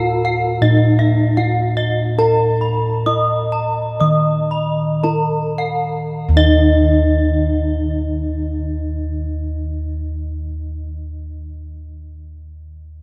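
Balinese gamelan in Eb pelog, brilliant and shimmering, cut from a longer piece that slows down over its first 6.2 seconds within a 51-86 BPM range, where a mellow, band-limited bronze metallophone struck with padded disc mallets carries the melody, a bright, airy metallophone played with a horn mallet spins up-front arpeggios with paired-tuning beats, and round, beating bossed gongs anchor the bass, all ringing out in a vast, echoing cathedral-like space.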